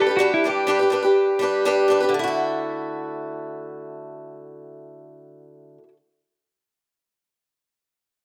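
Rock with a nostalgic, open-road mood, cut from a longer piece. A clean, twangy pedal steel guitar, played with fingerpicks and slide, carries a brief melody with volume swells over a G chord until 1.4 seconds. A bright, boxy, up-front acoustic guitar picks a swing-style accompaniment throughout, moving to Dadd9 at 2.1 seconds. Both guitars carry a slapback echo in a dry, outdoor sound with little reverb.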